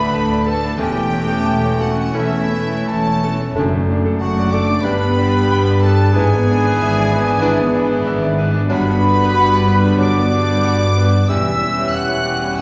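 Tragic and brooding, this classical excerpt moves at a rubato 92 BPM in 4/4, with a clear concert grand piano carrying the melody over a deep bass alongside a sul tasto violin section, while a dark cor anglais, an airy flute group, a second very quiet violin line and, from 0.8 seconds, a clear clarinet trace secondary lines. Hushed viola and a mellow bassoon fill the accompaniment, distant French horns and trombones hold sustained chords beneath dark trumpet stabs, and rich double basses with cellos anchor the bass, with timpani struck with medium mallets sounding briefly at 3.6 seconds. Heard from further back in a reverberant scoring stage, the harmony drifts from D through G and E7/G# to a closing C#dim/E at 11.3 seconds.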